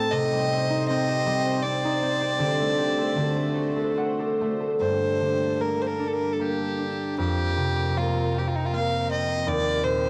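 A home cassette recording with light reverb carries this haunting, mournful Celtic slow air in G minor, cut from a longer piece, where an up-front, earthy fiddle with light vibrato and an airy bow sings the melody in a free, rubato 3/4 around 77 BPM over a ringing, fingerpicked concert harp and a smooth-topped chamber string section holding sustained chords in the background, with a harp fill from 3.6 to 4.8 seconds leading into the second section.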